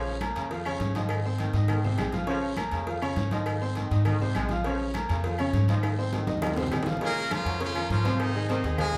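Salsa at a driving, danceable 203 BPM in Bb minor, with a thumpy pizzicato upright bass and a bright, open grand piano up front over Bbm and Ab chords, a punchy trombone section and damped congas, round bongos with cowbell, ringing timbales with agogo, woody claves and a raspy guiro behind them, a drum fill from 5.8 to 7.0 seconds, and a brilliant, vibrato-rich horn section entering with the melody in octaves at 7.0 seconds, all in a moderate studio reverb.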